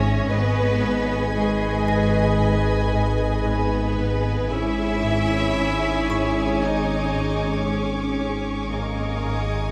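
A mysterious, uneasy suspense film cue in G# minor at a slow 57 BPM opens on a deep, rumbling drone and a ringing harp figure beneath lush bowed strings — a distant violin melody, a smooth second violin line, viola accompaniment and a cello and double bass foundation — along with a sine-toned organ-like pad and a high expressive violin texture, while a tinkling music box enters at 1.9 s, all moving from G#m to C#m/G# in a moderate scoring-stage reverb.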